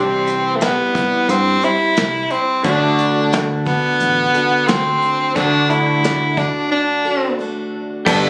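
A straight 4/4 pulse at 88 BPM carries this short folk rock and heartland rock excerpt, with soft brushes on a dark, smooth kit and a round fingered electric bass setting an open-road mood over a move from C to D at 2.6 seconds. Up front, a breathy, whispered tenor saxophone with light vibrato and slapback echo sings the melody until 7.3 seconds, while a picked plugged-in steel-string acoustic guitar with audible finger squeak plays underneath and a twangy, slightly broken-up electric guitar plays a lo-fi riff through lush chorus. A break begins at 6.7 seconds, and a reedy electric piano slips in very quietly at 8.1 seconds, all heard as if captured on a phone in a small club room with reverb.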